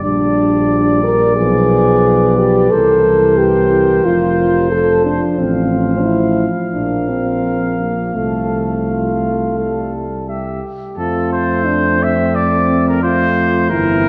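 The pulse of this 4/4 classical brass quintet passage is elastic, with uneven beats and rubato shaping each phrase, and the mood is triumphant and noble. A warm trumpet carries the melody with light vibrato, heard distant and roomy, while a flugelhorn plays a second line further in the background. The French horn stands out among the accompanying voices, mellow and smooth on top with light vibrato, and a trombone supports it from the background in the same classical style. Beneath them, an up-front tuba anchors the bass with a gentle vibrato. A wet concert hall reverb surrounds the ensemble, and the harmony settles on F at 11.0 seconds as a new section begins in this extract cut from a longer piece.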